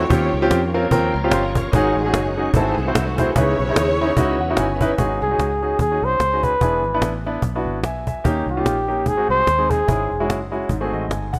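An uptempo gospel excerpt at 147 BPM in 4/4 with a swung eighth-note feel opens on a soulful, solemn note, as a bowed studio string section carries the melody with expressive vibrato and portamento over a bright, brilliant concert grand piano and a full, shouting tonewheel organ sitting in the background with slow rotary speaker and chorus vibrato. The piano, present and polished with deep bass and short sustain, plays fills at 0.5 seconds alongside the organ, while a round, foam-muted fingered electric bass and a woody, close and dry cajon played with soft hands drive the groove. The strings drop out by about 4.6 seconds and the organ shortly after, leaving the piano, bass and cajon as a breathy trumpet takes over the melody at 5.2 seconds, mellow and up front, with light vibrato and scooped notes in a jazz solo style. Harmonies lean on rich dominant colours such as G#7b9b13 resolving toward C#m9 and C#m, giving the passage a solemn, churchy weight. 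The sound is a rough home demo mix with light studio reverb.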